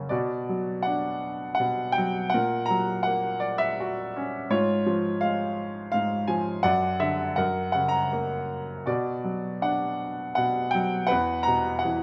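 A clear, up-front baby grand piano carries this reflective, dark classical excerpt alone, moving through B harmonic minor at 82 BPM in 3/4 with free, rubato phrasing across a span from E2 to A#5. Its harmony passes from Bm through F#/A# and C#/G# to Dadd9/F#, settling on F# before returning to Bm and closing on an open Esus2 at 11.1 seconds. The recital hall adds a moderate 1.7-second reverb tail, and a faint mains hum sits beneath the playing.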